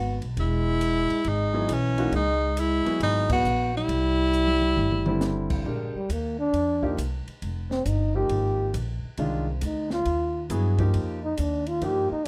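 Modal jazz at 136 BPM with a swung, spiritual and searching mood, this short cut opens on a breathy, subtone tenor saxophone melody over a dark trombone second line, woody pizzicato upright bass and a compact cocktail kit with a high-tuned snare, while an intimate grand piano with audible action noise joins at 1.5 s, and after a band accent and a drum fill the sax stops at 5.5 s so the trombone solos over F9sus4 in F dorian from 5.7 s, all set in light reverb.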